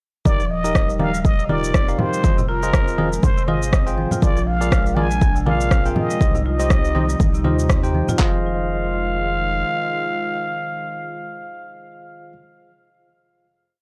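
A four-on-the-floor kick and clap from a deep house kit drive this afro house piece, joined by programmed shaker and rim click and interlocking, low-tuned congas, all swinging the sixteenths. A round sine sub bass holds long gliding notes under the groove, pumping with the sidechain, as does a woody, hard-mallet marimba repeating a 32-step arpeggio sequence in the background. A bell-like tine electric piano adds dotted-rhythm chord stabs through tape echo, while a raspy, growling trumpet with a plunger mute carries the jazz-style solo melody in hook phrases, its scooped notes and light vibrato caught in the same echo. Midway through, a smooth, detuned sawtooth pad with chorus enters and sustains beneath the other parts. The drums and percussion stop around 8.2 seconds and the bass at 9.6 seconds, leaving the trumpet, piano and pad on a final chord. The mood is driving, and the dry, gritty hardware recording carries transformer saturation and a touch of light reverb.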